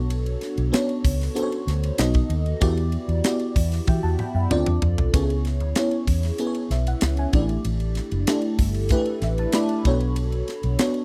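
Bittersweet and nocturnal, this polished 1980s jazz-funk pop excerpt in B minor moves at 95 BPM, with a lush, dreamy FM electric piano over a soft pad layer shimmering through analog chorus as it moves from Bm9 through Em9, Dm7 and A7sus4, a round, foam-muted fingered bass punching beneath it, and a tight funk drum kit with a high-tuned snare that plays a fill at 3.9 seconds before the piano adds its own fill at 8.9 seconds, all captured in a dry, close studio sound.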